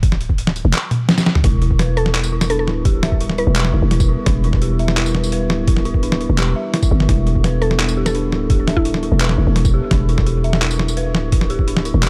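Half-time drum and bass at 170 BPM in E minor, heavy and tense, set in a dark digital ambience and cut from a longer piece. A growling, buzzy 808-style bass sits up front beside a thumpy, overdriven electronic kick and a gritty, pitched-down boom bap sampler-style kit of medium-tuned snare, handclaps, hi-hat, tambourine and toms, whose drum fill at 0.9 seconds leads in a moody, detuned analog pad with sidechain pumping and an eerie, inharmonic synth bell playing arpeggios through 12-bit sampler grit and dub echo. A woody, round mallet-like synth pluck adds brief melodic phrases in the background, first at 2.0 seconds and again at 7.6 seconds, over a single E minor chord.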